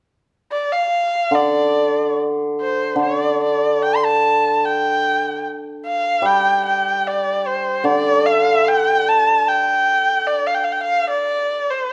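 Wistful and graceful, this fragment of Chinese traditional chamber music moves in a free, rubato 4/4, with a single bowed erhu entering at 0.5 s to carry the melody in a dark, expressive voice full of vibrato and sliding portamento, its upper notes staying smooth. From 1.3 s to 10.3 s a hammered dulcimer accompanies in its low register, its shimmering, ringing strikes sitting up front beside the erhu. Light reverb gives the pair a gentle sense of space as the erhu lingers alone until 11.9 s.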